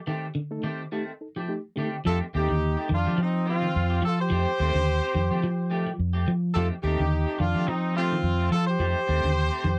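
A bright, punchy horn section carries the melody in this joyful, driving afrobeat excerpt, entering at 2.1 seconds with a smooth-topped, pop-style sound and vibrato. Beneath it, a breathy trumpet plays an intimate second line with a soft attack, scooped notes and a dark, whispered tone. The music moves at 107 BPM in 4/4 with a light sixteenth-note swing, sitting in F mixolydian over an F9 chord. It opens with a break for two clean, picked electric guitars and a reedy electric piano that is heard only briefly with fast tremolo. One guitar plays arpeggios with tremolo in the background, while the other plays stabs through an analog chorus. From 2.1 seconds a round, amped fingered electric bass sits up front beneath the horns, and the whole is captured dry and close in a 1970s studio style.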